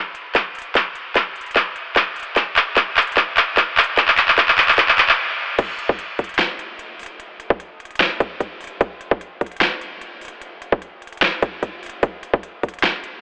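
A layered, produced pop drum kit sits up front with a fat snare, crisp hi-hats, handclaps and crash cymbal; high-pass filtering thins the snare, hats and cymbal, and the whole kit is set in small room ambience. This lush, euphoric future bass excerpt runs at 149 BPM in 4/4 with a half-time feel, cut from a longer piece. An electronic kick drum with a hard-clipped punch joins at 0.3 seconds, also up front and touched by the same small room ambience. The opening build-up carries a drum fill to 5.2 seconds, then a brief stop gives way to the drop at 5.6 seconds. Over the whole mix hangs a wet shimmer reverb with a long 5.3-second tail, and a high-pass filter and telephone sound narrow the overall tone.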